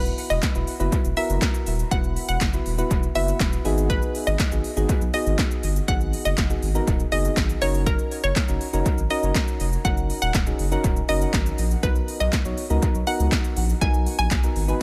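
A hollow, detuned square-wave pluck carries the melody over mellow, rounded electric-piano-like synth keys and a thick, saturated sub bass, all pumping against the sidechain, with a punchy deep house kit of kick, snare, handclaps, smooth hi-hat and shaker joining at 0.1 s. This bittersweet yet confident dance-pop cut in G# minor moves at 121 BPM in a straight 4/4, cycling through Esus2, G#m7, F#6 and Bmaj7. The mix is dry of reverb but heavy with dub echo on the pluck, keys and drums, while chorus shimmers on the pluck and keys and the drums sit up front.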